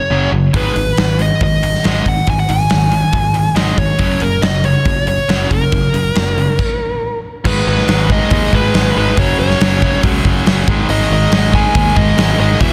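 Aggressive and heavy, this hard rock excerpt in G# minor drives at 139 BPM, with a dark, smooth overdriven lead guitar carrying the melody up front over a bright distorted riff guitar, a second overdriven riff guitar in the background, a growly picked bass and a punchy big-room drum kit that enters at 0.5 s; after a brief stop at 6.6 s, a very quiet tonewheel organ with slow rotary sustains chords from 7.4 s, all within a dense, heavily limited modern master.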